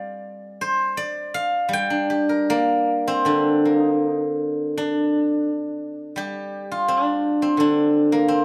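Close, detailed microphones and a light reverb place a single steel-string zither up front, its silvery, ringing tone caught in fine detail. This brief cut from a longer Chinese traditional piece for solo plucked strings carries a longing, elegant mood. Played with fingerpicks in G yu mode and tuned to A4 = 445 Hz, the acoustic zither ranges from D3 up to C6 over a loose 4/4. The rubato feel lets the pulse drift between 75 and 89 BPM. An opening phrase gives way at 3.3 seconds to a second section that carries the instrument alone through to 8.4 seconds.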